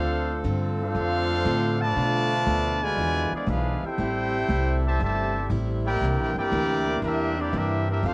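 Big band swing in a brassy, energetic mood, this short cut from a longer piece sets a clear, cassette-tinged trumpet section up front on the melody over a mellow, tight trombone section with light vibrato on the second line, while a warm saxophone section holds sustained chords in the background beside a full-bodied, picked jumbo acoustic guitar with finger squeak, and a woody, thumpy pizzicato upright bass on gut strings sits prominently beneath it all in a lightly reverberant home cassette recording.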